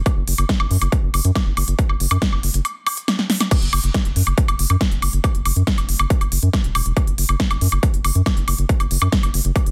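Dry and densely limited, this short cut from a longer psychedelic trance track has a driving, hypnotic pull in straight 4/4 time. An overdriven electronic kick sits up front with a punchy, layered thump, joined by a big-room dance kit that adds a punchy snare, crisp hi-hats, crash cymbal and woodblock, all with a touch of small-room ambience. Beneath them a round analog bass blends square, sine and triangle tones with a wave-folded edge, giving a deep, dark, sustained low end with a fast attack. At 2.6 seconds the kick falls away, a drum fill arrives at 3.2 seconds, and the drop lands at 3.5 seconds, carrying the full groove to the end.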